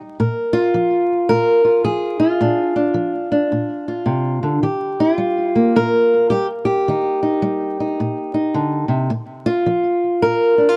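Swung eighths in 4/4 carry this gritty, soulful acoustic country blues excerpt, played solo on a fingerpicked old ladder-braced acoustic guitar that sits up front with a dark, boxy tone from its old strings and a touch of tape echo. The guitar moves from Bb to Eb at 4.6 seconds and lands on a Bb5 chord at 9.1 seconds, covering a range from Bb2 to Bb4. The close, dry 1970s-style studio sound carries light reverb and a layer of vinyl crackle.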